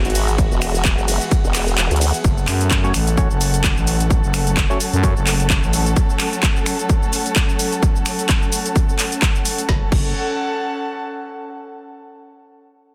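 The mix is dense and heavily limited, with little reverb, giving this bouncy, gritty bass house cut from a longer track a dry, in-your-face punch. An overdriven garage kit sits up front with a woody snare, metallic hats, handclaps, finger snaps, shaker, ride and crash, all carrying a light swing on the sixteenths. Beneath it, a punchy, layered electronic kick lands hard, briefly dropping away at 1.8 seconds. The opening bass is a detuned, sawtooth wobble shaped by a formant filter, which gives way at 2.2 seconds to a thick, growling FM bass roughened with tube saturation. Behind them, a dark, lush string ensemble holds bowed chords with expressive vibrato, and an airy, breathy pad with a slow attack drifts above, both pulsing with sidechain pumping. From 2.8 seconds a hollow, nasal organ stab with tape grit and delay flickers in the background.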